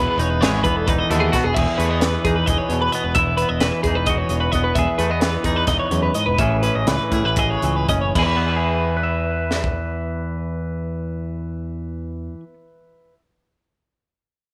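A twelve-string electric guitar sits up front with bright, compressed arpeggios soaked in harmonic tremolo and tape echo, joined by a clean semi-hollow guitar and a picked electric bass, while a double-tracked overdriven guitar riff with phaser flickers in the background only for the opening 1.4 seconds. This playful, wistful math rock and midwest emo excerpt in 7/8 moves at a brisk 223-264 BPM in eighths through jazzy major-seventh and ninth chords in E major, easing into a slowdown from 4.8 to 8.2 seconds before settling on a plain E chord. A gritty, saturated fusion kit with a high-tuned snare and punchy kick pumps in a small room and drops out at 9.8 seconds, leaving the guitars and bass to ring on.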